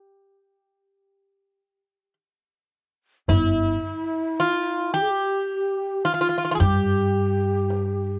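Turkish makam ensemble music, stately and passionate at 108 BPM in 10/8, where a bright, metallic, up-front Greek bouzouki carries the melody alone until a breathy, hollow ney with vibrato takes a second line at 3.3 s, joined by a woody pizzicato upright bass and a deep clay-shelled darbuka played with soft hands in the background, all captured in a dry, close 1970s-style studio sound with moderate booth ambience in this excerpt from a longer piece.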